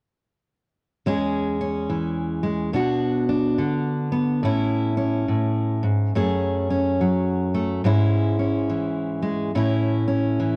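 Folk music for solo fingerstyle guitar, this short passage cut from a longer piece has a gentle, peaceful mood and an unhurried, lightly swung lilt in four. A single fingerpicked steel-string acoustic guitar, a dreadnought with fresh strings, carries everything from 1.1 to 10.6 seconds, ranging from a low E up to G# in the middle register. Its tone is full-bodied and warm, sitting up front in the mix. The harmony drifts through E6, Bm, A, F#madd9 and C#m/G# before settling back on A. The sound is dry and close, in the manner of a 1970s studio, with only a light touch of reverb around the instrument.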